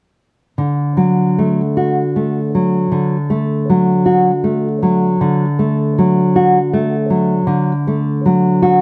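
Close, detailed microphones and light reverb place a warm, thumb-plucked nylon-string guitar with fresh strings up front in this tender, lyrical classical excerpt, where it plays a freely rubato accompaniment from 0.6 to 8.8 seconds.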